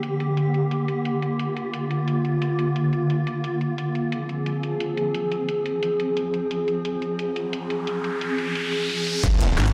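A swarming, tense drone of detuned unison chords pumps and evolves under its own reverb through this dark, futuristic slice of technical drum and bass, moving from Gm to Fm over overdriven electronic drums with a cracking snare, bright hats, cabasa, rim click and crash. A riser and sub drop enter at 7.5 seconds and build to an impact at 9.2 seconds. There a growling, detuned sawtooth bass snarls in, joined by an overdriven knocking kick and a very quiet, gritty breakbeat kit with a high-tuned snare and ride, all heard in a large, bare room.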